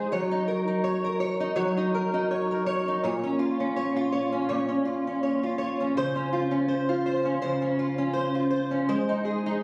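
Indie pop with a laid-back, nostalgic mood, this short excerpt features a lone fingerpicked plugged-in steel-string acoustic guitar playing from 0.0 to 9.6 seconds, its full-bodied jumbo tone sitting up front. An ensemble chorus and a warbly pitch drift color the guitar as it moves through a relaxed swung progression from Ebm7/Gb through Bbm and Dbmaj7 to Ab. Captured on a phone in a small room, the sound carries moderate reverb with a club-like ambience and noticeable compression.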